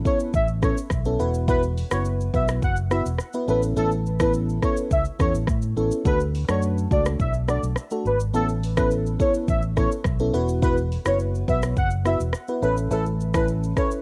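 This cassette-taped home recording, touched with light reverb, carries a sunny, romantic afrobeats snippet in a straight four. A lush, dreamy FM electric piano layered with a soft pad and colored by chorus and phaser plays the chords, while a velvety synth lead with vibrato, chorus and analog delay sings a smooth, sustained melody. An up-front electronic afro-pop kit with a deep kick, dark hats, rim click and shaker drives the groove, and a round, amped fingered electric bass enters at 0.3 seconds.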